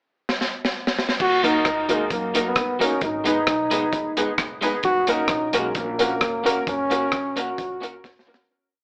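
The crunchy breakbeat drum kit sets an energetic, driving ska beat at 131 BPM in a straight 4/4, with a side-stick backbeat, a tight kick, a high-tuned snare and dark cymbals, its fill opening the pickup bar at 0.3 seconds. From 1.2 seconds an upright bass walks with slides beneath it, woody and dark in the background, and from 1.4 seconds an electric guitar at the edge of break-up and a jangly, detuned honky-tonk upright piano chop the off-beats over a progression from Ebm to Abm to Gb. Up front, a trombone plays a motif-based melody in song-like phrases, punchy and pop-styled with light vibrato and a touch of tape echo, which the piano's stabs share. The drums sound saturated and gritty with a rolled-off top, the guitar is compressed and picked, and the whole mix carries light reverb and an AM radio quality. This short, complete piece fades out from 6.7 seconds as a last drum fill closes it.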